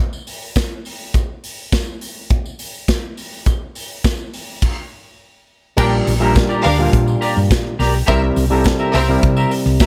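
An overdriven clav with auto-wah sits up front in this celebratory, danceable disco excerpt, its stringy, percussive tone arriving at 5.8 seconds alongside a dark, round hollow-body bass, a clean electric guitar bathed in lush chorus, and a smooth, bowed string section with vibrato. Before that, a punchy acoustic drum kit with crash, hi-hat and a medium-tuned snare drives the groove with a jingly, compressed tambourine in the background, pausing for a brief stop at 4.6 seconds. The harmony moves from Bb6 to C7 in a small room.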